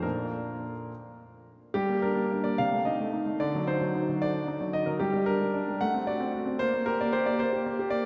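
A clear, up-front concert grand piano with deep bass plays solo through this restless, elegant classical-period sonatina fragment in a rubato 6/8, moving from a short opening section into a second at 1.7 seconds over harmonies built around G minor and a dominant flat-ninth colour, all bathed in the long wet reverb of a church.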